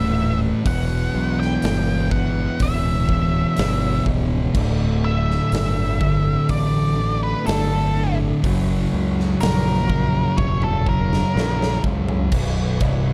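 A brooding, heavy slice of stoner and doom metal at a crawling 62 BPM in 4/4 opens with everything but the drums sounding at once. Two thick, distorted fuzz guitars grind out a low riff in the background, one murky and the other warm. A growling fingered electric bass is bright, overdriven and amped. A tonewheel organ holds full, lightly overdriven chords with audible key click through a slow rotary speaker, set further back. Above them, an octave-fuzz lead guitar carries a shadowy distorted melody through a slapback echo, and a big acoustic rock kit enters at 0.7 seconds with a punchy kick, medium-tuned snare, hi-hat, ride, crash and toms in a stone-room ambience. The harmony moves from A5 through Em, D5 and F# toward B5. A drum fill begins at 10.4 seconds, the lead drops out at 11.8 seconds, and light reverb wraps the dusky mix.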